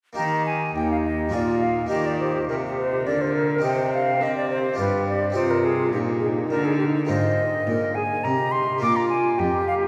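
A flowing triple metre at 104 BPM gives this baroque-style sonata movement a dance-like lilt, its straight feel moving in Eb major through a short passage cut from a longer piece. The concert flute carries the melody with a pure, straight tone and crisp attack, sitting up front and climbing as high as D6. A second, hollow-toned flute traces a lower line with vibrato and tongued notes, close-miked and entering at 0.7 seconds. Beneath them, a single bowed cello plays the bass with a clear, intense sound and vibrato, while a brilliant, full Flemish-style harpsichord with three sets of strings fills in the plucked continuo. The harmony moves from Eb through Bb7 into C minor and G7, then settles on Fm7/Ab before closing on Bb at 8.8 seconds. A wet cathedral reverb with a long 5.4-second decay places the ensemble in a resonant church or concert hall.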